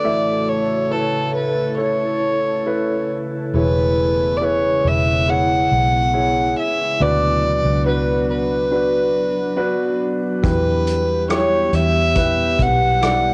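Pop ballad at 70 BPM, heartfelt and hopeful: a pure, floating violin, bowed sul tasto, carries the melody up front over natural grand piano and a glassy, ethereal FM pad with ensemble chorus; a dark, round, foam-muted fingered electric bass joins at 3.5 s, and a distant, roomy soft-mallet drum kit with punchy kick, hi-hat and rim click enters at 10.4 s, the whole set in a lightly reverberant home cassette recording where violin, piano, pad and drums carry tape coloring, moving through A, E6, Bm and Em in a section cut from a longer piece.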